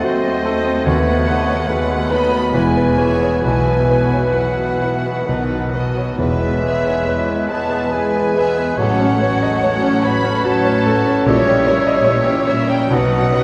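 A bright, brilliant grand piano sits up front and carries the melody with long sustain, joined by a rich, distant violin section on the same line in this lush, passionate classical excerpt in E major, moving in a rubato 3/4 at roughly 64-75 BPM. Around it, a clear violin section, a pure metal-toned flute, a quiet clarinet and a solo oboe weave second lines, while a mellow bassoon, a very quiet, expressive viola section and a close-miked French horn section fill in the harmony through chords such as D#dim7, B7/D#, F#m/A and A#dim7. An intense cello section enters at 0.1 seconds and a smooth double bass section at 0.9 seconds to anchor the bass, all bathed in a long, wet cathedral reverb of a church or concert hall.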